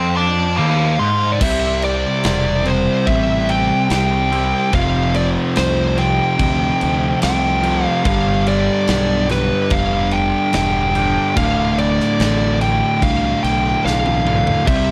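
This excerpt of ominous, hypnotic stoner and doom metal opens on a short break in which a dark, fuzz-distorted lead guitar takes a solo up front, carrying the melody high over a bed of riffing guitars. Beneath it sit a bright, overdriven and double-tracked garage guitar and two distorted fuzz rhythm guitars, one warm and one shadowy, all kept in the background and each churning a low riff. At 1.4 seconds a growling, overdriven fingered bass with a bright, direct-and-amped edge joins with a big acoustic rock kit, whose tight kick, medium-tuned snare, toms and crash sound mid-forward with a rolled-off top in a big room. The slow 72 BPM pulse in straight 4/4 moves through D minor, C, an F power chord and G before settling back on D minor, while the lead guitar's slapback echo lends its line a haunted sheen. A drum fill at 13.8 seconds marks the close of the passage, and a small room ambience surrounds the whole band.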